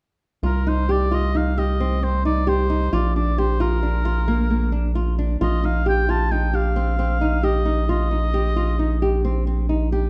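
A dark, warm production places the music in a moderate recital hall reverb, giving this short excerpt from a longer contemporary instrumental piece a hypnotic yet urgent mood. In C minor, it moves at 266 BPM counted in eighths through a straight 11/8 metre, moving from Cm to Bb to Eb6/Bb. Up front, a fingerpicked acoustic flamenco guitar spins arpeggios in its middle register, while a rubbery, hollow square-wave bass with a bouncy filter pluck and nasal edge holds low notes beneath it. Both enter at 0.4 seconds and run together to the end. A clear oboe, played in classical style with light vibrato, carries the solo melody from 0.5 seconds, sitting a little further back in the mix before falling silent at 9.2 seconds.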